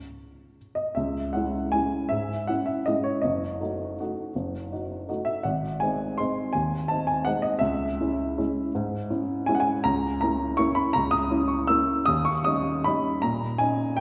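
A lone baby grand opens this nostalgic, wistful classical waltz in C# minor, its dark, mellow tone carrying audible action noise and a short sustain. Moving in a rubato 3/4 at roughly 144-170 BPM, the solo piano settles on C#m at 1.0 seconds and passes through diminished and dominant-seventh harmonies before reaching D#7 at 12.1 seconds. Heard from further back in a concert hall with a wet 2.4-second reverb, this intimate fragment of a longer piece stops at 14.0 seconds.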